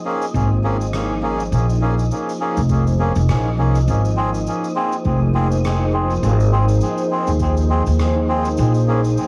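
A warbling, nostalgic pad with chorus and its own reverb opens this spacious, deep ambient dub excerpt alongside a faint, breathy wind-like tuned noise layer, all on a lo-fi home cassette recording dusted with vinyl crackle. Reedy, nasal melodica stabs enter at 0.1 s through dub echo and plate reverb, while an up-front, woody pizzicato upright bass on gut strings carries the low end and bright, airy cabasa and rim click sit low in the mix with dub echo over a swung sixteenth feel. A deep analog electronic kick drum sits in the background until 7.5 s.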